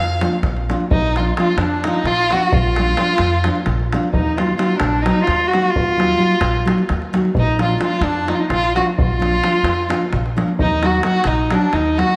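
Bittersweet and virtuosic, this short cut from a longer Balkan wedding-band piece moves in a quick 7/8 at 260 BPM in eighths, with a straight feel and tuning set slightly high at A4 = 441 Hz. An up-front, bowed solo violin carries the melody between D4 and F5, its tone rich, nasal and focused with vibrato and a smooth top. A bright, vintage-sounding clarinet enters at 0.9 seconds with a classical-style second line held between D4 and Gb4. A fingerpicked nylon-string guitar supplies warm classical accompaniment, while a woody, thumpy pizzicato upright bass with steel strings anchors the low end between Bb1 and F2. A tight, band-limited davul keeps time beneath them as the harmony alternates between Bb and Ebm, all set in a recital hall with a wet reverb of about 1.7 seconds.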